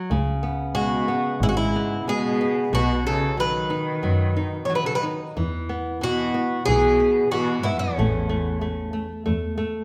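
Bathed in a wet recital-hall reverb, this mournful, passionate fado-style ballad in E major moves at a rubato 92 BPM, with an up-front fingerpicked flamenco guitar and a clear, earthy bowed double bass starting at once, a mellow, metallic Irish bouzouki carrying the picked melody on its double strings from 0.7 seconds, and a distant, woody cello bowing a dark second line with vibrato, all in a short cut from a longer piece.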